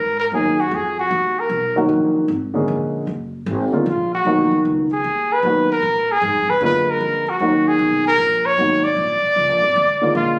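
A breathy trumpet with light vibrato and a touch of plate reverb carries the melody up front in this smoky, swinging small-group jazz excerpt in Eb minor at 152 BPM, over a quiet, woody, growly pizzicato upright bass and a dark, mellow baby grand piano that enters at 0.3 seconds with audible action noise, all heard through a moderate club reverb as if captured on a phone in the room while the harmony moves between Ebm7, Bb7#9 and Bmaj7.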